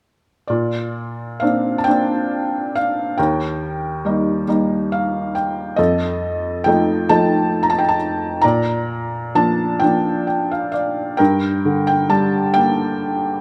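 A felt-muted upright piano, soft and intimate with audible action noise and placed up front, plays a tender, peaceful classical solo in Bb major at a slow 45 BPM in a rubato 6/8, moving from Bbadd9 through Eb, F7 and Bb toward Gm, with brief fills at 4.5 and 9.8 seconds and a moderate recital hall reverb around it in this short cut from a longer piece.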